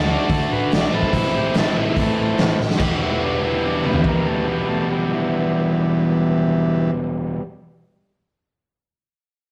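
A rough rehearsal-room sound with tube saturation and a moderate stone-room reverb gives this short garage rock cut from a longer piece its menacing, gritty edge, played in a straight four-four feel. A vintage, buzzy combo organ carries the melody and takes a transistor-organ solo over the opening 2.8 seconds as the harmony moves from D to A minor. Beneath it, a biting, double-tracked overdriven guitar plays the riff up front, while a round, amped hollow-body short-scale bass sits darker in the background. The raw garage kit comes in at 0.3 seconds with a punchy kick, a medium-tuned snare, hi-hat, crash and toms, its saturated tone rolled off at the top, and it plays a fill at 2.6 seconds before the music settles onto E minor. The drums drop out at 4.1 seconds, leaving organ, guitar and bass to carry the menace; the organ falls away at 6.9 seconds, and guitar and bass close out the cut.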